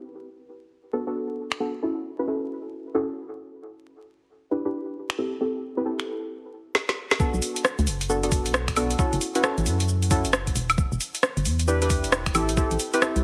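A deep, warbling, detuned chord stab with chorus and delay opens this late-night, bouncy two-step UK garage excerpt at 134 BPM in B minor, moving through a filter sweep. After a brief drum hit at 1.5 seconds, an overdriven, up-front garage kit of woody snare, metallic hats, rim clicks, finger snaps, shaker and woodblock joins from 5.1 seconds. A drum fill then leads into the drop at 7.2 seconds, where a knocking electronic kick and a hollow, organ-like FM bass with sidechain pumping arrive, the whole mix carrying a heavily compressed radio sound with vinyl crackle.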